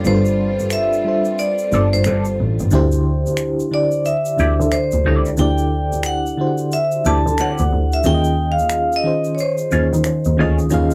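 A mellow FM electric piano with tremolo opens this soulful neo-soul R&B excerpt at 90 BPM, joined at once by lush bowed strings that hold sustained chords until 2.7 seconds, an egg shaker and finger snaps with a group handclap in a small room, and an earthy, bowed double bass with light vibrato, all moving over a swung 16th-note feel through G9sus4, D9sus4 and Eb9sus4 chords. A ringing, metallic vibraphone struck with hard mallets carries the melody up front with slapback echo and a medium motor vibrato, while from 1.7 seconds a slightly broken-up electric guitar through a small old amp adds a compressed, fingered second line with wah. The sound is dry and close, like a 1970s studio recording with little reverb.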